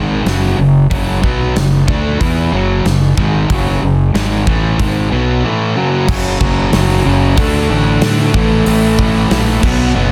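A dense, heavily limited mix with light reverb carries this aggressive, driving hard rock clip, cut from a longer piece, where a dark, sludgy distorted guitar riff sits up front beside a growly, punchy fuzz bass and a cranked stack guitar adds a brighter overdriven edge in the background. A gated 80s drum kit with bright cymbals, a medium-tuned snare and a tight kick that clips softly enters at 0.3 s in an airy stone-room sound. At 6.1 s a very quiet, double-tracked second sludgy guitar riff joins, along with a gritty overdriven tonewheel organ on a slow rotary speaker holding sustained chords, as the harmony moves from F#5 through D5 to A5.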